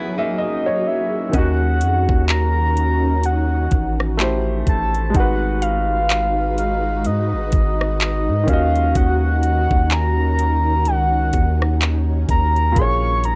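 Sensual and moody, this contemporary R&B excerpt moves at a slow 63 BPM in Eb minor, with a swung sixteenth-note feel and the worn haze of a home cassette recording in a lightly reverberant room. It opens on a brief break in which a clear concert grand piano plays a fill over an Emaj9 chord, joined by a direct-recorded clean electric guitar picking compressed arpeggios through analog delay, while an ethereal, airy pad with ensemble chorus and sidechain pumping holds sustained chords beneath. At 1.3 seconds the guitar drops out and the groove arrives: a smooth, electronic R&B kit with a knocking kick, metallic hi-hats, rim clicks and handclaps sits up front alongside a deep, sine-like 808-style bass whose long notes decay mellowly. Above it all, a soft octave-layered synth lead, round and detuned with vibrato and chorus, carries the melody in a high register from 0.4 seconds onward. A woody, mallet-like FM pluck adds bright, percussive texture in the background through delay until 12.0 seconds. 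The harmony drifts through Ebm7, Am7 and Abm7 before settling back on Ebm7 and closing on Bbm7.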